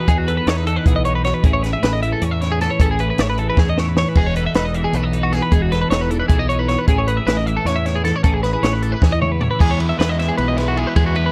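Two twangy, bright twelve-string electric guitars open this wistful, intricate math rock and midwest emo passage in E major at 308 BPM in 7/8: one plays up-front chordal accompaniment through an ensemble chorus, while the other picks clean, compressed arpeggios with slapback echo over chords moving between Emaj7 and Amaj7. A growling, overdriven fingered bass sits forward alongside a compact cocktail drum kit with dark cymbals, a high-tuned snare and a punchy kick, which adds fills at 3.6 and 9.0 seconds. At 9.6 seconds the chorus guitar drops out as the harmony settles on E and a double-tracked, overdriven guitar riff enters, all in a dark, warm, nearly reverb-free production.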